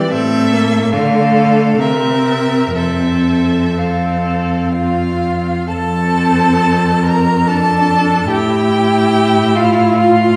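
A yearning, solemn classical string-quartet movement in rubato triple time opens with a rich, focused first violin singing the bowed melody up front with vibrato, a warm second violin holding a smooth second line from a distance, and an expressive viola gliding with portamento farther back, while a clear, even cello enters on the bass at 0.1 seconds, the quartet heard from deep in a recital hall's wet reverb as the harmony moves through Am, Dm and C7 to settle on F.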